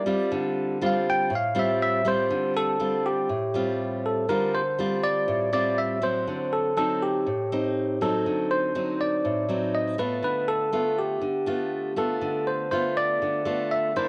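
A bell-like tine electric piano opens this intimate, melancholic bossa nova in D minor with a brief solo passage over the first 2.3 seconds, its tone bright, clean and direct. Beside it, an up-front nylon-string guitar plays the accompaniment, fingerpicked, full-bodied and classical in character, with fresh strings and audible finger squeak. The tempo sits at 121 BPM in a straight 4/4. The harmony moves from Dm11 through Dm7 and D7b9 to G9/D over the short span. Both instruments carry a cassette tape coloring, and light reverb with small room ambience gives the whole a close, homemade feel, this fragment being cut from a longer piece.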